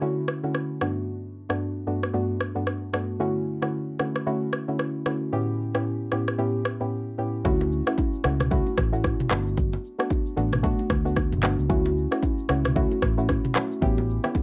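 A soft, round synth pluck with chorus opens this romantic, breezy afrobeats piece at 113 BPM in D major, joined almost at once by an up-front afro-pop drum kit with vintage 12-bit grit, a deep kick and smooth hats, and after a brief break at 6.9 seconds a dark, foam-muted electric bass and close, dry congas and bongos in the background enter at 7.5 seconds, in a lightly reverberant room.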